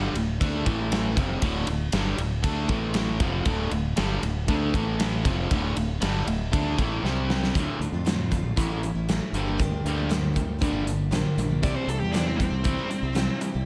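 A distorted electric guitar riff, bright and double-tracked up front, and a growling fingered bass with overdrive open this swaggering, driving classic rock excerpt in D minor at 118 BPM, joined from 0.2 seconds by a big rock drum kit with a punchy kick and a medium-tuned snare in a dark, roomy sound. After a drum fill at 7.0 seconds, a full-bodied jumbo steel-string acoustic guitar is picked in the background as the chords move through Dm, A and Gm7. At 11.6 seconds a dark, bluesy overdriven lead guitar adds a brief second line over a C chord, all set in light studio reverb.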